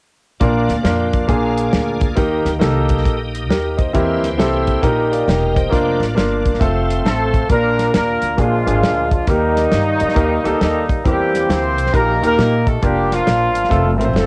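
A swung 135 BPM groove in 4/4 from a dry, dark soul drum kit with a tight kick and a woody pizzicato upright bass drives this hopeful, uplifting uptempo gospel excerpt in Bb major, where an intimate, up-front grand piano with audible action noise accompanies throughout, a bright, shouting tonewheel organ with a slow rotary speaker, light overdrive and chorus vibrato holds sustained chords until 7.5 seconds, and a punchy, tight horn section in octave doubling takes up the melody from 7.0 seconds, the whole excerpt captured as a home cassette recording in a small room with light reverb.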